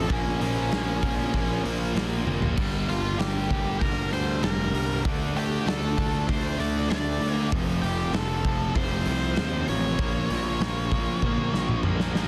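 Cathartic and angsty, this short excerpt of quiet-loud alternative rock moves at 97 BPM in a straight 4/4, with a dark, picked octave-fuzz lead guitar carrying the melody through analog delay until 11.8 s over a bright fuzz guitar and a scooped high-gain guitar riffing in the background. A growly, overdriven picked bass and a punchy, up-front acoustic drum kit with a big-room sound drive the chords from Bbm through Gm, Dm and F back to Bbm, with drum fills at 2.3 s and again from 11.2 s. Beneath it all, a very quiet, mellow string machine cello sustains slow-attack sawtooth chords, and the whole is set in light reverb with a dense, heavily limited modern master.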